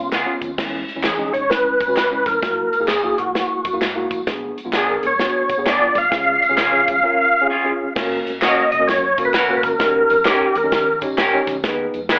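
Squeezed through a thin telephone filter and a wet club reverb, this short cut from a longer uptempo, danceable 1960s-style soul piece swings at 130 BPM in F# major, with a fat, percussive tonewheel organ up front carrying the melody through chorus vibrato, a slow rotary speaker and tape echo; a worn, slightly out-of-tune tine electric piano accompanying with light overdrive; a dark, round, foam-muted bass in the background; a twangy, lo-fi guitar stabbing briefly at the start and returning at 4.7 s with tape echo; a polished, airy drum kit with a punchy kick; distant group handclaps, tambourine and tube shaker; and very quiet, high-tuned congas.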